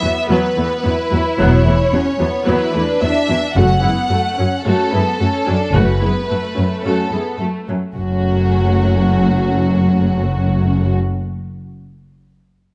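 Relentless and dark, this cinematic, epic orchestral film-score passage is cut from a longer piece and moves at 109 BPM in a straight 4/4, in F# minor. A bowed string ensemble carries it: the violin section takes the melody with a smooth, even tone, light vibrato and a polished top, while a second violin section adds a rich, lush line that sits distant behind it. The viola section fills in the accompaniment with a mellow, vibrato-laden sound, and the cello section anchors the bass with soft attacks, expressive portamento and vibrato. At 1.4 s the double bass section joins beneath the cellos, soft-edged and expressive yet up front in the blend. The harmony rests on Esus2 before settling onto F# minor at 3.6 s, and a brief second section begins at 8.0 s, all captured with close, detailed microphones and a light reverb.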